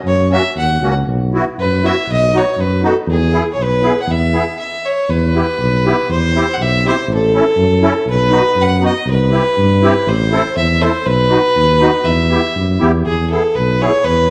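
Bouncy and festive, this alpine folk dance-band excerpt at 120 BPM in a loose rubato 2/4 sets a biting, earthy bowed fiddle melody over an up-front, close-miked tuba bass and a reedy, shimmering musette accordion in a moderate recital-hall reverb with a dark, warm production, with a brief stop at 4.6 seconds before the tune shifts from E major to E harmonic minor at 5.1 seconds and the opening section returns at 13.1 seconds.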